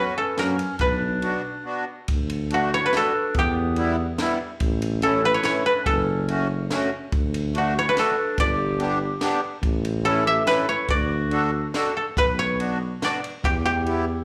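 Heard as a live gig through a club PA, this short excerpt of alpine dance-band folk carries light reverb and a small-room ambience, with a bouncy, festive lilt at 143 BPM in 3/4 and D major. Up front, a woody, dry koto played with fingerpicks carries the melody, its notes trailed by a slapback echo. A reedy accordion with a slow beating quality sits equally close in the accompaniment, also touched by slapback echo, while a clear, distant clarinet in classical style adds a roomy second line that drops out at 11.7 seconds. A mellow tuba anchors the bass in classical fashion, and a compact cocktail drum kit enters at 0.4 seconds, sounding natural with a punchy kick, a high-tuned snare and a ride cymbal. After a brief break at 1.6 seconds, the harmony moves through D, Em, A, F#m and G before returning to the opening material on a Bmadd9 chord.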